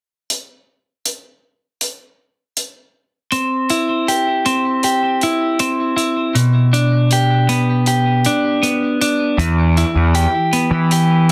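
A small-room acoustic hi-hat opens this brooding, angsty quiet-loud alternative rock fragment in straight 4/4, joined at 3.3 seconds by an up-front, compressed clean electric guitar picking delay-tinged arpeggios over C, G/B and Em, before a bright, punchy overdriven fuzz bass bites in at 9.4 seconds, with moderate studio reverb and a dense, heavily limited modern master.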